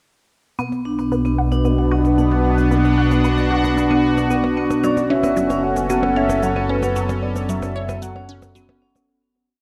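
Steeped in a dark plate reverb, this mysterious, expansive piece of sequencer-driven space music moves at 113 BPM in B minor, shifting from Bm to F#m at 4.8 seconds. Up front, a bright, detuned sawtooth pad holds slowly changing chords over a warbling, vintage analog drone bass. Meanwhile, a metallic vibraphone runs a 5-step arpeggio loop, a squelchy resonant blip pluck repeats a phased 6-step riff in the background, and a light machine pulse of shaker and low bongo blips gradually fades in. A round, octave-layered synth lead arrives at 4.8 seconds with call phrases before the recording fades out from 6.3 seconds.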